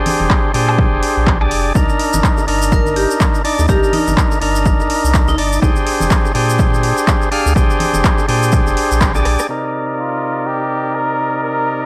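A dry, gritty recording with transformer saturation and a touch of studio reverb frames this hypnotic deep house fragment at 124 BPM in 4/4, with a swung sixteenth-note feel in C minor. Up front, an overdriven tonewheel organ plays thick, percussive stabs with key click, vibrato and third harmonic percussion, run through a low-pass filter and tape echo and moving between Bb13 and Cm7 chords. Beneath it, a round sine sub bass pumps against a punchy, overdriven electronic kick, while a layered deep house kit of handclaps, hi-hat, rim click and woodblock adds its own drive; soft-handed congas and bongos sit in the background alongside a grainy tube shaker. A bright, airy vibraphone with medium hard mallets and slow motor vibrato rings out a short melody from 2.7 seconds, trailed by tape echo. After a band accent and a drum fill, the rhythm section drops out at 9.5 seconds as a filter sweep moves across the organ, and at 10.0 seconds a veiled cup-muted trumpet enters with a soft, classical-style solo line.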